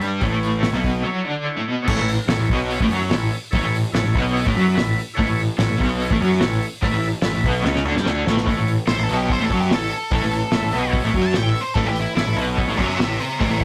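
A crunchy, double-tracked overdriven guitar riff with tremolo leads this swaggering, rowdy garage rock excerpt at 146 BPM in A mixolydian, over fuzz-drenched picked bass, a thuddy cloth-damped drum kit with a fat snare and dark cymbals, and a buzzy vintage combo organ holding sustained chords with light vibrato. After a break at 1.1 seconds and a drum fill at 7.7 seconds, an octave-fuzz lead guitar enters at 8.9 seconds for a distorted solo. The rough rehearsal-room sound carries tube saturation and moderate reverb, and the fragment is cut from a longer piece.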